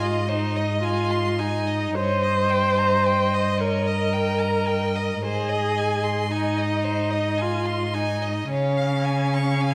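A recital hall's reverberant ambience surrounds this short passage, cut from a longer slow, romantic movement for string quartet. In a triple metre with elastic rubato, the mood is lyrical and warm. The melody belongs to a distant violin with light vibrato, sitting softly in the background, while a clear, focused second violin sings a second line. Up front, a rich viola fills in the accompaniment with a smooth top, and a close, even cello anchors the bass. All four bowed parts play through the full 9.7 seconds, moving from Ab to Eb/G, back to Ab at 5.2 seconds and on to Db at 8.5 seconds.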